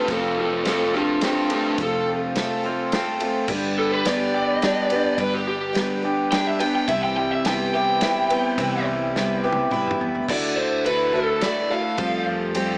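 A dark, overdriven lead electric guitar solo with analog delay opens this jangly folk and heartland rock excerpt in 3/4, set over a bright, shimmering twelve-string acoustic, a slightly broken-up, lo-fi electric riff, a reedy, breathing pedal harmonium that stops at 10.3 seconds, woody pizzicato upright bass and an airy, punchy country drum kit whose fill at 9.2 seconds leads into a brief closing section, heard with light reverb and a small-speaker sound.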